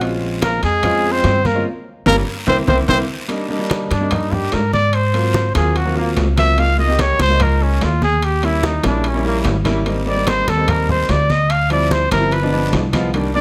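Close, detailed microphones in a large studio with moderate reverb frame this fiery, sultry Afro-Cuban jazz excerpt at 146 BPM in a straight 4/4, where a woody, thumpy pizzicato upright bass sits up front beside an intimate baby grand piano whose action noise and long sustain carry the chords from Bbm9 through Ebmaj7/G to G7b9. Dry, damped congas and ringing metal-shell timbales with a saturated edge sit in the background, a raspy guiro scrapes along, and a distant, roomy trombone with scooped notes and soft attack adds a second line to the trumpet's melody from 0.4 to 3.0 seconds. After a band accent and a drum fill, the vibrato-laden trumpet takes an up-front jazz solo from 3.3 seconds to the end.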